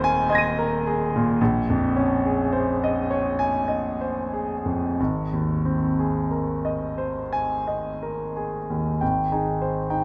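This is impressionist classical music for solo piano, a dreamy and luminous fragment cut from a longer piece. It moves slowly in 3/4 at roughly 43 to 56 BPM, with a rubato feel that lets the time breathe in the key of Ab major. A concert grand plays alone throughout, spanning Eb1 to Eb7. Its tone is clear and natural, with a deep bass and long sustain, and it sits up front in the sound. The harmony drifts from Abadd9 over Eb through Bbm11 and back to Abadd9, then turns toward a new passage at 9.0 seconds on Abmaj7. A moderate scoring-stage reverb surrounds the instrument with a gentle sense of space.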